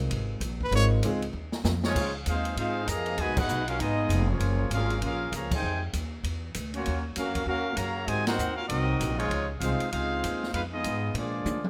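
A joyful, energetic big band swing excerpt at 196 BPM in Db major, where a warm upright piano and a brief close-miked trumpet with light vibrato open over woody pizzicato upright bass and a small-room drum kit with dark cymbals and a boomy kick, before a drum fill at 1.3 seconds leads to a tight, smooth-topped trumpet section carrying the melody from 1.9 seconds above a soft-attack trombone section, with band accents punctuating rich extended chords under light reverb.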